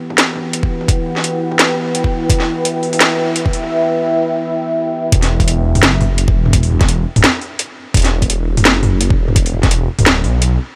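A swung half-time drum and bass groove, heavy and dark, opens with a build-up where a deep, moody pad of detuned sawtooth chords, thickened with chorus and pumping against the beat, sits over a knocking, overdriven electronic kick and an up-front layered kit of cracking snare, metallic hi-hats and toms, until the drop at 5.1 seconds trades the pad for a thick, swirling phased saw bass, the whole passage set in a light reverb and taken from a longer piece.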